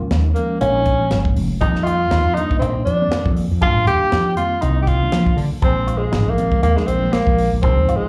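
Electric jazz fusion with a funky, slick feel, moving at 120 BPM in 4/4 with a light sixteenth-note swing in Bb mixolydian, taken from a longer piece and heard as a live club gig through the venue's PA. A warm tenor saxophone carries the melody up front from 0.3 seconds, its vintage, vibrato-laden tone touched by slapback echo. Beneath it, a woody fretless bass sits strong in the mix with a dark, growly, hollow-body roundness, while a tight funk drum kit of hi-hat, kick and snare sounds dry and airy, with a medium-tuned snare and a tight kick. In the background, a bell-like tine electric piano comps brightly and cleanly with slapback echo, and a picked electric guitar through an envelope filter adds compressed stabs thickened by ensemble chorus and slapback echo. The harmony moves through suspended ninth chords, Eb9sus4, F9sus4 at 1.6 seconds and Bb9sus4 at 5.6 seconds, all wrapped in a light club reverb.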